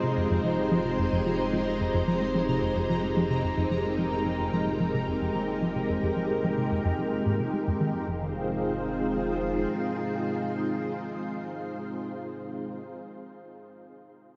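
A straight 4/4 pulse at 110 BPM drives this mysterious, expansive stretch of sequencer-driven ambient space music in F minor, opening on Fm7 with a tight, nasal, detuned sawtooth synth riff, a lush vintage string machine holding up-front sustained chords, a fat analog bass on F1 fading out in the background, a pulsing tempo-synced gated texture, and a very quiet, ringing Celtic harp arpeggio that drops away by 1.9 s. The riff ends at 8.3 s, the bass lingers until 9.7 s, and the strings carry on to 12.8 s, all of it soaked in a huge, dreamy reverb with a dark, soft top end.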